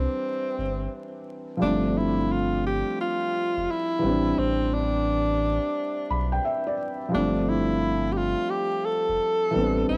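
A breathy tenor saxophone with a subtone plays a jazz-style solo melody, full of vibrato and scooped notes, over a soft, felt-muted upright piano accompaniment, both with a cassette-tape tint, while a round, sine-like sub bass with tube saturation sits deep beneath. Together they give this cosy, mellow, swung lo-fi hip hop excerpt an intimate small-room feel amid vinyl crackle, as the harmony moves from Cmaj7 through G9sus4 and Am11 and the piano adds a brief fill between 5.7 and 7.1 seconds.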